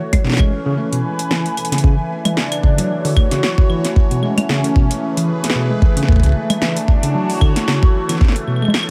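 Intricate and glitchy, this short IDM excerpt moves at 113 BPM in D lydian with a swung 16th feel, as a swirling, detuned sawtooth pad with phaser, chorus and 12-bit sampler grit holds sustained chords that shift between Amaj9 and Dmaj9. A bell-like, clean tine electric piano plays arpeggios through tape echo, while a very quiet bubbling texture with random resonant filter steps ends by 1.9 seconds. Up front, a compressed, pitched-up thumpy kick and a punchy analog drum machine with metallic hats, claves and congas drive the groove, the kick dropping out from 1.3 to 1.8 seconds around a drum fill at 1.6, all in a dry mix.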